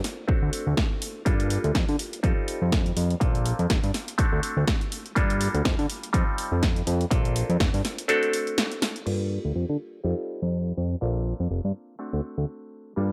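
A bright, twangy clav treated with phaser, sidechain pumping and a low-pass filter opens this sensual, funky filtered disco house piece, cut from a longer track, in G minor at 123 BPM with a light 16th-note swing, together with a punchy, tape-warm analog drum machine with pumping hi-hats and crash, and they are soon joined by an up-front electronic kick and a fat, detuned sawtooth bass with a filter pluck over a D7, Gm7, F7, Bbmaj7 progression, while a filter sweep runs until 9.1 seconds, the kick drops out at 8.1 seconds and a drum fill at 8.8 seconds leads into the next section.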